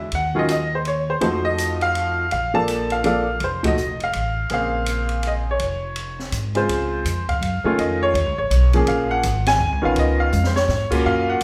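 A wet, roomy studio sound captures a jazz piano trio playing live together in this smoky, cool 3/4 swing fragment at 165 BPM, moving from Bb minor into Db major at 6.7 s. The clear, up-front concert grand carries the melody with deep bass and long sustain, over a woody, growly pizzicato upright bass on steel strings. A quieter drum kit with dark cymbals, a high-tuned snare and a boomy kick enters at 0.1 s, joins the band accent at 3.6 s and plays a short fill at 10.3 s.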